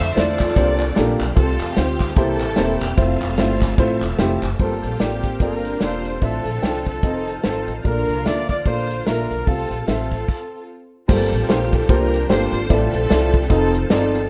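A tight, dark-cymbaled soul drum kit sits up front in this jubilant uptempo gospel excerpt in F major at 148 BPM with a swung feel, joined by a thumpy, woody pizzicato upright bass, an intimate upright piano with audible action noise, a smooth bowed string section carrying the melody, a distant crisp group handclap that drops out at 4.5 seconds, a soft-attack trumpet solo entering at 4.6 seconds, and a bright, lightly overdriven tonewheel organ with fast rotary speaker and chorus vibrato shouting in the background, all in a dry, rough home-demo mix with a brief stop at 10.3 seconds.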